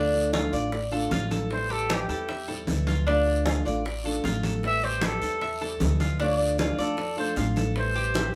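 A punchy, vibrato-laden trumpet enters at 1.5 seconds and leads this sultry, nostalgic excerpt of Cuban son and guajira at 154 BPM, carried over Dm and Am7 by metallic double-strung tres arpeggios, a fingerpicked nylon-string guitar, a woody, thumpy pizzicato upright bass up front, bright hard-handed congas, round low-tuned bongos in the background and a raspy, close guiro, all played live together in a moderately ambient studio room.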